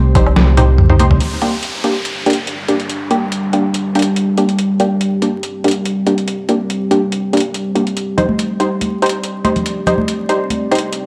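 Dark and heavy, this deep dubstep excerpt moves at 142 BPM in a half-time feel with a light swing on the sixteenths, set in G minor. A deep, moody ambient pad holds sustained sawtooth chords through the whole passage, its slow attack and chorus-washed reverb giving a mellow bed, while a rumbling, detuned saw bass sits up front on a low C for only the first 1.2 seconds. Muted, evolving dub chord stabs with a filter sweep and dub echo punch in from 0.2 seconds, riding the harmony from C minor to G minor at 1.2 seconds and back to C minor at 8.0 seconds. A compressed, pitched-down, muffled sampler-style trip hop kit of hi-hat, snare, toms and woodblock plays throughout, with a drum fill leading into the second section. Bright, close congas with dub echo appear at the start and return from 8.2 seconds, and an electronic downlifter sinks in faintly between 1.2 and 4.6 seconds. The production is dark and warm, set in a moderate echo-chamber reverb with vinyl crackle.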